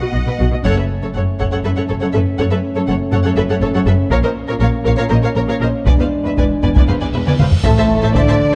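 In a driving 7/8 at 240 BPM counted in eighths, with a straight feel, this epic orchestral film-score cue in F# minor surges forward with a relentless, heroic energy, cut from a longer piece. Two violin sections carry the melody and a second line above a lush, vibrato-rich viola accompaniment, while cellos and a distant-sounding double bass section anchor the low end, all bowed. A roomy French horn section enters at 0.6 seconds with sustained chords alongside a close, dry taiko ensemble struck with hard sticks, the loudest part of the mix, and the band lands a sharp accent just after. The harmony moves from B to F#m, then to A#m and E7, before a huge, dark cymbal swell rises in the background from 7.0 seconds and a drum fill leads into an impact on an A minor chord at 7.7 seconds. There a clear trombone section joins with sustained chords and a very quiet, articulate timpani adds weight, all set in light reverb.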